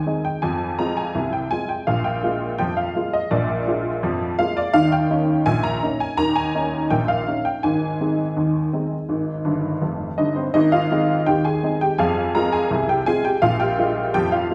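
A detuned, jangly honky-tonk upright piano plays solo from start to finish, its woody, vintage tone sitting up front in the mix. The style is ragtime in Ab major, taken at 83 BPM in a straight 2/4, with a jaunty, cheerful mood. Its range stretches from F1 up to Bb5, and the harmony moves through Fm, Bb7, Eb5 and Ab before returning to Fm and Bb7. The opening phrase runs to 10.5 seconds, with a short piano fill from 9.5 seconds leading into a restatement of the same material. The recital hall's reverb, with a 1.4-second decay, gives the sound a church or concert hall ambience, and this brief excerpt is cut from a longer piece.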